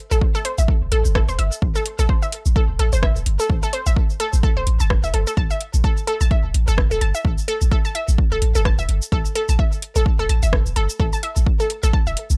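Cool, sparse minimal techno at 128 BPM in A minor with a swung 16th-note feel: an overdriven analog kick and a deep sine sub bass with a pitch-drop attack sit up front, the bass warmed by tube saturation and pumping under the sidechain, while a garage kit of metallic hi-hats, rim clicks and shaker adds overdriven texture and a squelchy, resonant blip-pluck riff around an A5 chord shimmers with chorus, sidechain pumping and tape echo, all captured as a dry, gritty hardware-to-cassette recording in a short excerpt from a longer track.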